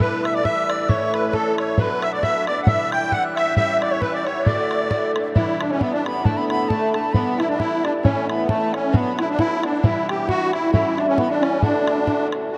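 A swung 2/4 pulse at 134 BPM drives this bright, rollicking Celtic polka in D major, a short passage cut from a longer tune that runs its opening strain twice, the repeat arriving at 5.4 seconds. The damped, tight bodhran sits close and dry up front, keeping the dance moving. A reedy musette accordion carries the melody with a shimmering, smooth tone and a dark edge. A pure, close-miked wooden flute plays a second line above it, with vibrato, a crisp attack and an expressive touch. Underneath, a fingerpicked twelve-string acoustic guitar gives woody, boxy, octave-doubled accompaniment through a chord cycle of Em, A, Bm, A7 and D, its old strings lending a dark color. The whole performance is bathed in a huge, wet reverb that places it in a vast, echoing space, with each part sounding until near the close at about 12.5 seconds.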